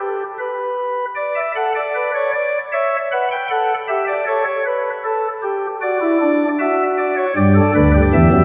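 A straight, steady 4/4 pulse drives this lively, joyful excerpt of a baroque-style three-part fugue, played solo on pipe organ flute stops that sound soft and up front, with chiff and baroque voicing, ranging from D2 to G5 and moving from an open start through D, A, A7 and back to D before reaching G, all bathed in a wet church reverb that lingers for 2.6 seconds.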